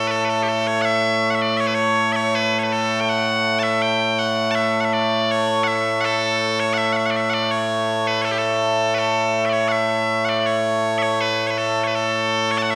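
A solo bagpipe opens at once, loud, bright and piercing, sounding up front in a continuous line of proud, stirring Scottish pipe music set in a straight 2/4. The tune runs through one section and then repeats it from 9.0 seconds, ranging from A2 to A5 and tuned slightly sharp with A4 at 445 Hz. A wet recital-hall reverb surrounds the pipes, giving the sense of a church or concert hall, and the passage is cut from a longer piece, ending at 12.8 seconds.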